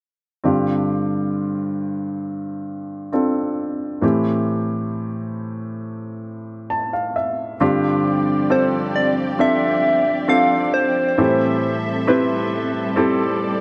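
A slow, straight 4/4 pulse at 67 BPM carries this melancholic, emotional pop excerpt, where a clear, polished baby grand piano plays up-front accompaniment from 0.4 seconds over G7sus4 and Am7 chords, adds a fill from 6.3 seconds, and is joined at 7.6 seconds by veiled, con sordino bowed strings holding dark sustained chords, while a round, gentle FM synth lead with chorus, vibrato and digital delay sings a brief melody from 8.5 to 11.6 seconds, all in light studio reverb with a smooth, rolled-off top.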